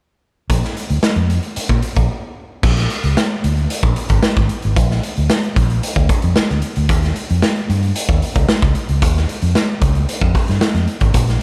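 A straight, strutting 4/4 funk groove drives this gritty excerpt, cut from a longer piece. A raw garage drum kit sits up front, its punchy kick, medium-tuned snare, hi-hat and crash cymbal captured in a bright stone room that pumps, with a saturated sound and a rolled-off top. A fingered electric bass plays alongside from 0.5 seconds, dark, round and amped, its range spanning Ab1 to Bb2 in the mixolydian mode. A short break arrives at 2.1 seconds, and the groove then moves into a new section at 2.6 seconds that carries on until both parts stop at 11.4 seconds. Light reverb adds a touch of space.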